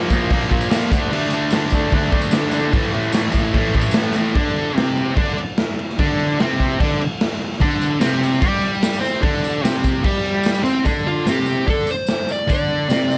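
A thick, double-tracked fuzz guitar riff and an up-front garage drum kit with crash, hi-hat, a punchy kick and a medium-tuned snare kick off this swaggering, raw 148 BPM garage rock clip in straight 4/4, with a jingly tambourine sitting dry in the background, chords moving through Bb5, D5, A5 and Csus2 under light reverb, until a compressed fuzz lead guitar bursts in for a short solo at 11.1 seconds.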